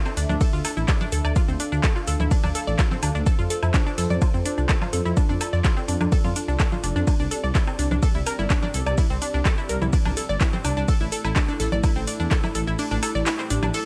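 This melancholic, dark melodic techno excerpt in D minor opens on a deep, moody analog pad holding sustained chords with a slow attack, its detuned square and sawtooth tones softened by chorus and breathing with sidechain pumping. Almost at once a round analog pluck joins with arpeggios, its fast attack and short decay carried by chorus and delay, while a layered deep house kit of congas, handclaps, metallic hi-hats, ride cymbal, shaker and woodblock rolls along with overdrive and the air of a large room. A menacing, detuned saw bass swells underneath in unison with a saturated edge, pumping against the beat and sitting up front. A gritty, tape-toned breakbeat kit of hi-hat, shaker and snare adds very faint, pitched-up texture in the background. The dry, punchy, overdriven electronic kick enters at 0.4 seconds and drives the straight 4/4 pulse at 126 BPM until it stops at 12.4 seconds, while the harmony moves through Dmadd9, F and C5 to an A7 chord, all set in light reverb and digital ambience.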